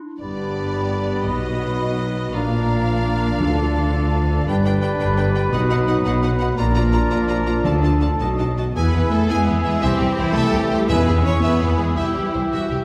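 Rich, lush double basses sit up front beside focused close cellos as clear, vibrato-laden violins soar over the melody in this soaring, heroic 6/8 adventure film cue, with a second violin line, smooth background violas, a dark soft-attacked clarinet, a warm distant oboe, pure rolled-off flutes, mellow roomy French horn chords and clear trumpet stabs filling a scoring-stage hall heard from further back, while hard-mallet timpani strike dry and articulate at 3.4, 7.6 and 10.9 seconds.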